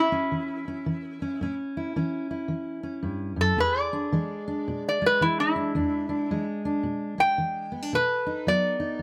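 A loping swing feel at 111 BPM in 4/4 drives this laid-back, swaggering stretch of acoustic country blues in E mixolydian, cut from a longer piece and moving from A to E7 before landing on B7 at 7.9 seconds. Up front, a metal-body resonator guitar played with a steel bar and fingerpicks takes the melody throughout, its slide tone metallic and nasal, while a fingerpicked jumbo steel-string acoustic guitar with fresh strings supplies full-bodied accompaniment. Close, detailed microphones and light reverb keep the pair intimate and present.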